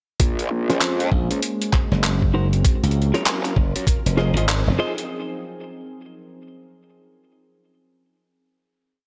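A thumpy, pitched-down kick, a gritty swung kit of snare, closed hi-hat and handclaps, and a growling, saturated wobble bass open this short, swaggering glitch hop build at 98 BPM in F phrygian, with its 16ths swung. From 0.7 s clean electric guitar plays syncopated, rootless chord stabs through a filter sweep, delay and sidechain pumping. A warbling, lo-fi sawtooth pad joins with sustained Bbm9 to Fm7 chords, and a bright, punchy slap bass enters at 1.1 s with chopped phrases, all in a tape-tinged, up-front funky mix with light reverb.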